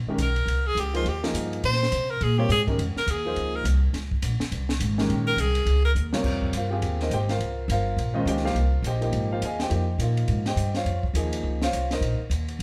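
Modal jazz at a brisk 208 BPM with a swung feel, searching and cool in F minor, with an upright bass played pizzicato, woody and thumpy, and a warm baby grand piano laying down chords that move between Fm11 and Bbm11. A bright, close-miked tenor saxophone with a soft attack carries a solo up front until about 5.9 seconds, and a drum fill at 6.0 seconds ushers in the second pass, where bass, piano and drums carry on together. The compact cocktail kit sounds dry, with dark cymbals, a high-tuned snare and a punchy kick, and the band plays live in one room with moderate large-studio reverb in this excerpt cut from a longer piece.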